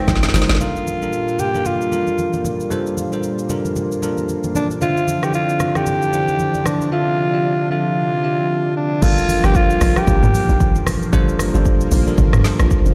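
Swung sixteenths at 114 BPM drive this soulful, late-night amapiano cut in G dorian, where a produced electronic kit with a deep kick, woody snare and crisp hats sits up front over soft-handed, thin-skinned congas in the background, while a raspy, gritty alto saxophone with a smooth top and tape echo sings the lead over bell-like electric piano and a thick, detuned sawtooth pad that pumps with chorus and phaser in the background, and the hollow, bouncy log drum bass pops in briefly at the opening fill before returning for the drop at 9.0 seconds, shortly ahead of the sax falling away at 10.9 seconds.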